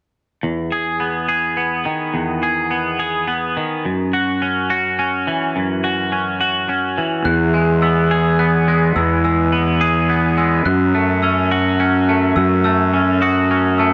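Rock in 3/4 at 106 BPM in E major, cinematic and euphoric, this excerpt opens with a twangy, clean electric guitar picking arpeggios up front through analog chorus and delay over Emaj7 and F#5. At 7.2 seconds a mellow, bell-like glockenspiel struck with rubber mallets adds high ringing arpeggios with its own analog delay, and at 7.3 seconds a growly, fuzz-overdriven fingered bass enters low and forward as the harmony moves between Emaj7 and F#m7. A moderate recital hall reverb with small room ambience surrounds the parts.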